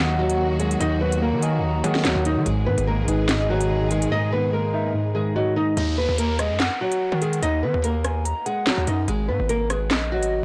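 Cold, dark half-time drill hip hop at 145 BPM in Eb minor, cut from a longer piece, where a fingerpicked nylon-string guitar carries the melody over crisp hats, a sharp snare, handclaps and rim clicks, a heavy, saturated 808-style bass, round electric-piano-like synth keys with chorus and a lush bowed string section that both drop out by 5.8 seconds, a hollow, woody clarinet-like synth lead with tremolo and delay in the background, a downlifter from 5.8 to 9.1 seconds, a silent gap from 4.1 to 5.8 seconds, and a blown-out, overdriven digital ambience.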